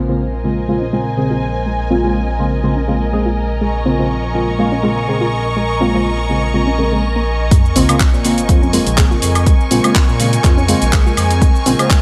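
Deep house in Bb minor at 123 BPM, this moody, deep excerpt from a longer piece opens on a Bbm9 chord, with a slight 16th-note swing. An airy, breathy pad holds sustained chords while a deep, mellow chord stab with chorus, phaser and digital delay plays dark, decaying hits, both pumping against the sidechain alongside a smooth synth bass thickened with tube saturation. A lush, woody studio string section adds dark bowed texture, and from 0.7 seconds a soft, round pluck sits in the background with warbling, delayed arpeggios, while the pad and arpeggio sound both carry a filter sweep through the opening build. At 3.6 seconds a vintage string machine of violins enters high on a single shimmering note with ensemble chorus. The drop lands at 7.5 seconds, where an up-front, overdriven electronic kick and a layered deep house kit of handclaps, hi-hat, shaker and woodblock arrive with an impact and a very quiet sub drop, all set in light reverb.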